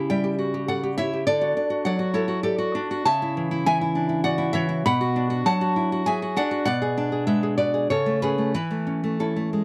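Sunny and nostalgic, this romantic piece for solo classical guitar moves at 99 BPM in 3/4, with uneven beats and a free, rubato feel. A single nylon-string guitar, fingerpicked and placed up front, plays throughout the 9.6-second excerpt, ranging from B2 to B5 with a warm, acoustic tone. The harmony opens on a rootless A7/C# before settling on D, then turns toward A major from 3.1 s, passing through A/C#, Bm and Bm6 before closing on A/E. The sound is dry and close, in a 1970s-style studio setting with light reverb. Tuned to A4 = 442 Hz, the passage is cut from a longer piece.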